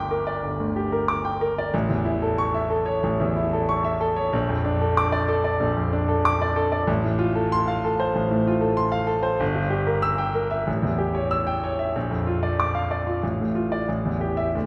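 A bright concert grand piano carries this stormy, passionate classical study alone, its brilliant tone and deep bass ranging from G1 up to E6. The tempo sits around 93 BPM in 4/4, but the rubato feel lets the pulse stretch and push in the manner of a virtuoso showpiece. The harmony moves from G minor through an A chord, a Bbmaj7 and F/A, then darkens with a diminished colour before an A7 and a Bb, settling on an open A by 13.9 seconds. The instrument itself has a natural, up-front character with a short sustain. It is set in a wet scoring-stage reverb with a 2.0-second tail, heard from further back in the room. The passage runs just under 15 seconds and is cut from a longer piece.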